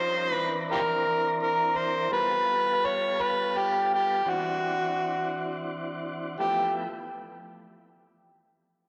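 An overdriven, gritty amplified harmonica takes the jazz-style solo up front, full of vibrato, tongue slaps and scooped notes, while a smooth, clean tonewheel organ turning through a slow rotary speaker holds sustained chords beneath it in this rollicking, swaggering 12/8 blues excerpt, cut from a longer piece and bathed in the wet reverb of a concert hall.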